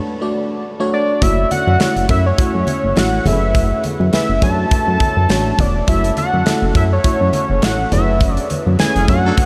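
A lush, chorused FM electric piano with a soft pad layer opens this danceable, slick early-eighties boogie funk in F# minor at 103 BPM, joined at 0.9 s by a fat, detuned analog lead with vibrato and analog delay, then at 1.2 s by a glossy, nasal chorused synth bass, a punchy, polished modern studio drum kit of hi-hat, kick and snare, and very quiet, bright congas, before a brief warm horn section surfaces at 9.0 s during the closing band accent, the swung sixteenth-note groove soaked in a huge, dreamy reverb.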